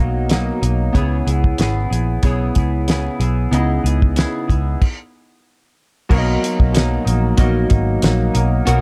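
The recording has a dark, lightly reverberant studio sound, with the drums and bass sitting up front in this short cut from a longer piece. It is hazy, nostalgic indie and bedroom pop with a gentle swing, moving between Bmaj7 and C#m7 chords. A bright, clean semi-hollow electric guitar carries lush chorus and a warbly pitch drift, while warm analog keys add detuned, wave-folded tones with a filter sweep and their own chorus. A round, foam-muted picked electric bass holds the low end, and a damped 70s drum kit with a fat snare, tight kick, hi-hat and dark crash cymbal comes in at 0.3 seconds. A stop from 4.8 to 6.1 seconds breaks the groove before the music settles back onto Bmaj7 for a new section.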